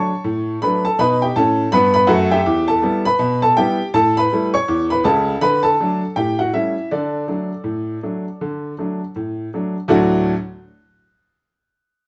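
Set in a moderately reverberant room and heard up front, a woody, boxy upright piano with audible action noise and long sustain plays a cheerful, jaunty solo ragtime in D major at 81 BPM in 2/4 with a swung sixteenth-note feel, moving from D through B7, Em and A7 back home to D before a new section begins at 9.9 seconds and the piano stops at 10.3 seconds in this short cut from a longer piece.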